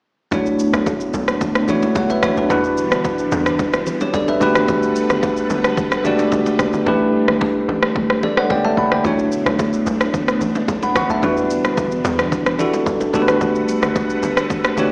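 Bathed in a lush hall reverb with a digital sheen, this amapiano excerpt sounds as if it were played over a big sound system in a bare room, yet it carries a small-speaker quality. The mood is late-night and deep, and it sits in a straight drop from 0.3 seconds onward. Up front, a bell-like tine electric piano spells out clean, bright chords that move through Bm11, Em7, Gmaj9 and A9sus4. Beneath it, a dark, vintage string machine with cello voicing holds sustained sawtooth chords, coloured by phaser, ensemble chorus and sidechain pumping. A tight, percussive log drum bass with a fast attack and a decaying tail sits alongside an overdriven, punchy electronic kit of kick, rim click and shaker. Warm, close congas and bongos struck with hard hands add texture in the background, and the hi-hats drop out between 6.9 and 9.0 seconds.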